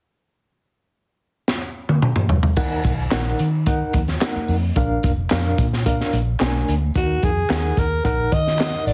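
A growling, raspy alto saxophone enters at 7.0 s in this passionate, urgent excerpt of uptempo 1960s-style soul at 110 BPM in Eb harmonic minor, after a crunchy, gritty breakbeat drum kit opens with a fill at 1.5 s and is joined from 2.6 s by a barky, reedy electric piano with overdrive and fast tremolo, a dark, foam-muted fingered electric bass, very quiet high-tuned congas, and tambourine and handclaps in the background over Ebm and Bb chords, heard through light studio reverb and a heavily compressed radio sound with cassette tape character.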